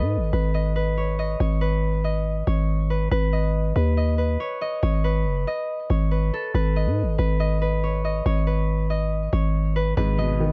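A fingerpicked concert harp rings out up front in a low-passed haze of tape echo, over a growling, buzzy 808-style bass with a sine-like, decaying punch, opening this brooding, hard-hitting trap excerpt in G# phrygian at 140 BPM with a half-time feel. The harp carries the melody while the bass holds the low end through a break that gives way to a new section at 3.1 seconds. At 10.0 seconds a dark, mellow baby grand piano slips in, intimate and filtered, with audible action noise and short sustain, all set in a dark, warm production.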